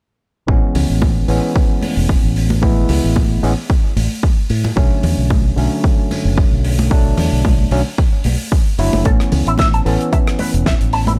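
A punchy, tape-warmed electronic kick sits up front in this sunny, groovy nu-disco excerpt at 112 BPM in A major, its sixteenths carrying a light swing and a touch of studio reverb. Beneath it, a bright fingered electric bass runs through an envelope filter, while a barky, overdriven tine electric piano, heard through a combo amp, pumps with sidechain and trails tape echo. A damped 70s drum kit adds dry hi-hat, rim click and a fat snare in studio reverb, and hard-hand congas sit in the background of a live room. The harmony moves from Amaj7 to Bm9 at 4.8 seconds, and at 9.1 seconds, as the chords settle on A, a dark, clean electric guitar riff enters, enveloped-filtered and compressed, coloured by lush chorus, vintage 12-bit sampler grit and tape echo. Studio ambience surrounds the whole groove.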